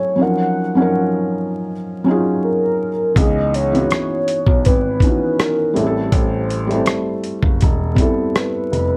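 A warbling, detuned lead with chorus and vibrato sings a nostalgic melody over a soft, felt-muted upright piano from the start of this reflective, melancholic lo-fi hip hop excerpt at 81 BPM, moving from D#m9 to C#m9 at 3.2 seconds, where a dark grand piano with audible action noise takes the bass and a gritty, compressed sampler-style kit of thumpy kick, hi-hat and rim click swings up front, all under vinyl crackle in a small room.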